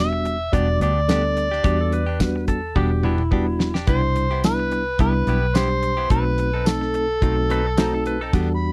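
An overdriven, gritty harmonica leads this brooding, mournful fragment of straight-eighth soul blues in E minor at 108 BPM, played in a jazz style with tongue slaps, scooped notes and light vibrato, while a reedy, worn electric piano with fast tremolo and a round, foam-muted fingered bass carry the Em7, Cmaj7 and B7b9 changes. A damped 70s drum kit with a fat snare, tight kick, dark cymbals and tambourine sits up front and plays a fill from 2.8 to 3.9 s, as a bright, direct-recorded clean guitar adds picked stabs. A twangy lap steel slides in with a second line at 1.6 s and returns at 7.5 s, all captured in a dry, close 1970s-style studio sound.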